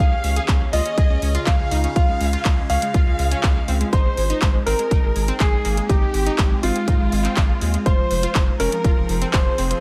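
The recording has a polished, roomy sheen, with an overdriven electronic kick sitting up front and punchy, and a house kit of handclaps and hi-hat, also overdriven, re-recorded in a large room. This is a short cut of emotional, bittersweet progressive house in a straight four, moving through Db, Ab and Fm7. A clear grand piano carries the melody through a digital delay, while a studio violin section plays a rich, bowed second line in the background with vibrato and a soft attack. An evolving wavetable pad holds morphing, sustained chords through a phaser and its own reverb, and a vintage-sounding analog pluck spins detuned, warbling arpeggios with chorus, delay and a filter sweep. Underneath, a deep, saturated sine sub bass anchors the low end, and it pumps with sidechain along with the piano, violins, pad and pluck, as the house kit comes in at 0.2 seconds and the kick at 0.5 seconds.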